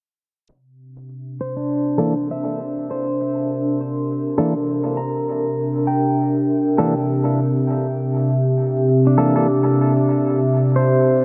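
A hazy, peaceful ambient dub passage, cut from a longer piece, sits in a lush hall reverb with a low-pass filter and filter sweeps running through its whole length. A very quiet cabasa, electronic and tape-warm with a small-room character, starts at 0.5 seconds. At 1.0 seconds a warbling, nostalgic tape-like pad follows with detuned, ring-modulated square and triangle tones, holding slow-attack chords up front under chorus and its own reverb. A bright, twangy pedal steel guitar, played with fingerpicks and slide, adds compressed arpeggios with volume swells, trailed by tape echo. A clean, picked electric guitar stabs through dub echo until 9.5 seconds. At 100 BPM in 4/4 with a swung sixteenth feel, the harmony rests on C9 in C mixolydian before shifting to a rootless Am/C near the end.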